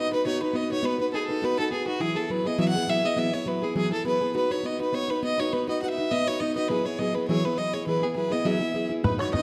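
A lightly swung 4/4 reel drives this bright, rollicking Celtic folk piece, with a clear, focused fiddle carrying the melody up front over a picked, plugged-in steel-string acoustic guitar, until a twangy, fingerpicked banjo and an open, boomy bodhran join at 9.0 seconds, the whole set in a dark production with a reverberant recital hall sound.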